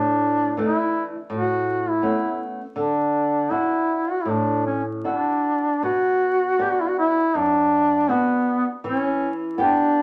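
Fado in a rubato 4/4, hovering around 76-84 BPM, this tender, nostalgic passage is cut from a longer piece and moves from D major into B minor at 5.8 s. A clear duduk carries the melody up front from start to finish, sung in a folk style with vibrato and scooped notes. Beneath it, a flamenco guitar plays fingerpicked accompaniment throughout, its old strings giving an acoustic, dark, woody tone that also sits up front. The harmony drifts from Asus4 and Aadd9 to Dadd9, then turns to Bm and finally Em at 8.8 s. A wet large studio reverb surrounds the two instruments, and a layer of vinyl crackle adds a worn, nostalgic patina to the sound.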